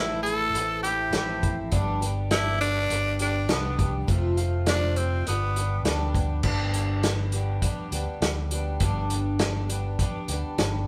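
A raspy, close-miked tenor saxophone carries a gritty, vibrato-laden melody with scooped notes until 5.8 s over a shimmering, octave-doubled twelve-string acoustic guitar with audible finger squeak, a round, punchy fingered electric bass and an up-front vintage drum kit with dark cymbals and a pumping room sound, giving this wistful, reflective folk rock and heartland rock excerpt at 102 BPM the feel of a band playing live together in a large studio reverb as it moves through Am, G and F.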